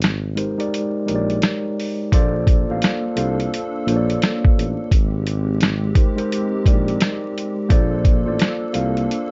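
Lo-fi hip hop in B-flat major at 86 BPM, this cosy, mellow excerpt from a longer piece rides a swung 4/4 groove over chords of Abmaj9 and Bbmaj9. A compressed, sampler-style drum kit sits up front, pitched down and muffled, with a thumpy kick, a medium-tuned snare and hi-hat. A dark tuba carries the bass line low in its range, played in a jazz style with vibrato and scooped notes, like a solo voice. A clean, direct tine electric piano enters at 0.4 seconds, also up front, its tone coloured by cassette tape. After a short break, a hollow, flute-like pad arrives at 2.1 seconds, sitting softly in the background with a warbling, detuned vintage character, long sustained chords and ensemble chorus. The whole mix carries light reverb and vinyl crackle, with a dusky top end that rolls off above 7.5 kHz.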